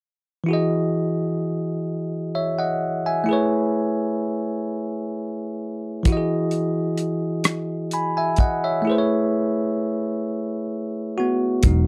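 A bell-like tine electric piano opens this slow, tender R&B excerpt in E major, its bright, clean tone sitting up front as it moves between Emaj9 and Amaj9 chords at 43 beats per minute in a straight six-eight. The piano carries the accompaniment alone until a damped 1970s drum kit enters at 6.1 seconds with hi-hat, a tight kick and rim clicks, its dark, rolled-off top keeping the sensual mood soft and close. A vintage foam-muted fingered electric bass arrives only at 11.6 seconds, a round, punchy low E that lands just as the fragment ends. The sound is dry and intimate, with little reverb, like a close 1970s studio session, and each part stays near the listener.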